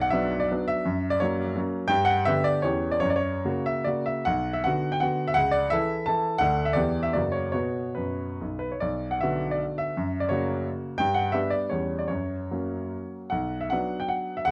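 A clear, present grand piano plays solo from the first moment in a nostalgic, capricious romantic triple-time dance in B minor, its dotted rhythms pushed and pulled by rubato between 135 and 184 BPM, with a second phrase returning to the opening harmonies at 8.8 s, all set in light reverb and coloured by worn, warbling cassette tape whose pitch drifts throughout this fragment of a longer piece.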